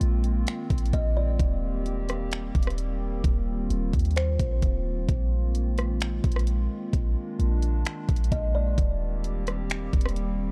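A half-time 4/4 groove at 130 BPM drives this excerpt of atmospheric cloud-rap in Eb major, with an up-front electronic R&B kit of knocking kick, finger snaps, hats and rim clicks over a deep, boomy, sine-like 808 bass. A warbling, nostalgic lo-fi pad of detuned waves sits softly underneath, bathed in chorus and its own reverb with a sidechain pump, sustaining Bb9sus4 and Eb6 chords. Brief, woody kalimba phrases ring through a low-pass filter and digital delay at 0.9, 4.2 and 8.3 seconds, giving the dark, close production a blissful, floating mood.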